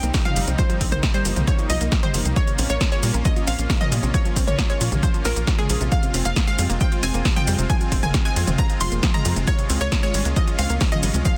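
An up-front, punchy electronic kick drives this 135 BPM uplifting trance excerpt in F minor, with a barely audible impact at the start and a tight, mellow sawtooth sequencer bass, plus a tape-warm analog drum machine playing hi-hat, shaker, punchy snare and toms, all pumping against the kick. A lush, detuned unison pluck carries the melody with subtle chorus and dub echo, while a second, ring-modulated pluck arpeggiates in the background and a bright supersaw pad with vintage 12-bit grit sustains chords moving from Cm through Bbm and Fm to Db. The mood is driving and emotional, with little reverb and a dense, heavily limited modern master.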